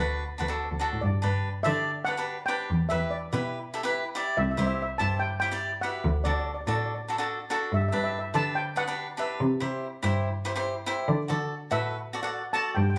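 Calypso in G major at 143 BPM with a carefree, sunny mood, where a bright, crisp picked cavaquinho and a dark, veiled bowed cello played con sordino with vibrato sit up front from the start, before a mellow, shimmering double seconds steel pan played with soft rubber sticks takes the melody at 1.0 seconds, all heard live together in a large studio room with moderate reverb in this cut from a longer piece.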